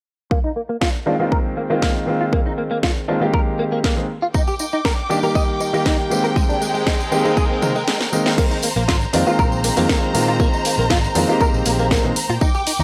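A clean, direct-recorded electric guitar riff with chorus, delay and a filter sweep opens this sunny, groovy nu-disco excerpt at 119 BPM in Bb mixolydian, joined at once by a punchy, up-front electronic kick and then a house kit with a cracking snare and warm hats, while a smooth vintage grand piano pumps along on Bb9sus4 and Ebmaj7 chords. At 4.3 seconds a bright bowed violin section with sampler grit brings sustained chords and a distant tambourine enters. After a drum fill, and a brief gap in the kick, a punchy fingered electric bass arrives at 8.8 seconds, all captured in a dry, gritty hardware sound with transformer saturation.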